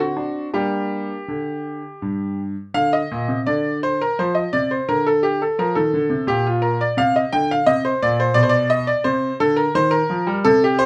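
Lightly reverberant and close, this short cut from a baroque-style classical suite movement features a solo grand piano with a brilliant, vintage tone and long sustain, moving in a flowing yet solemn 3/4 with free rubato through chords such as D7, Gm, Bb and Cm.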